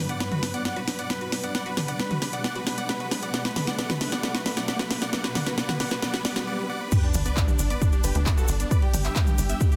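A huge, bright supersaw lead opens this driving, euphoric uplifting trance excerpt at 134 BPM in B minor, over a round analog pluck, a shimmering ethereal pad, a very quiet sequenced arpeggio and faint risers, while a techno drum kit with a cracking snare plays a fill through most of the Bm build-up before the drop at 6.9 seconds, when the chord moves to G and a heavy electronic kick, a grainy cabasa and, from 7.1 seconds, a punchy, nasal sequencer bass arrive in a dense, heavily limited mix that pumps with sidechain.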